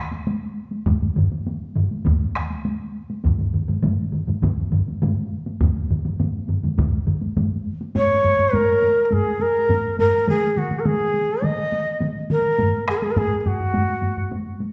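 Japanese traditional taiko drum music, driving and ceremonial, in which several close-miked taiko ensembles struck with heavy sticks, one dry and one pushed up front, are joined by a solo taiko heard in a small room while the pulse keeps quickening, until a breathy, bamboo-toned shakuhachi with a crisp, chiffy attack and straight tone enters at 8.0 seconds, expressive and up front yet distant, inside the reverberant air of a recital hall.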